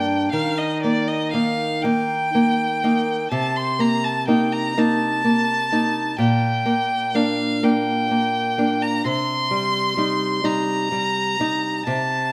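Solemn and elegiac, this short romantic duo for violin and classical guitar moves in a slow, rubato 6/8, with the dotted-quarter pulse around 39 to 44 BPM. A single bowed violin carries the melody in its upper register, its tone clear and smooth with a light vibrato and an even delivery. A fingerpicked nylon-string guitar supports it throughout, its small, warm acoustic sound sitting low and close. Both instruments play together from start to finish of this 12.3-second fragment, cut from a longer piece. The harmony passes from Eb through Cm7 and Gm/Bb to Cm, giving the passage a grave, mournful cast. A moderate scoring-stage reverb surrounds the pair with a gentle sense of space.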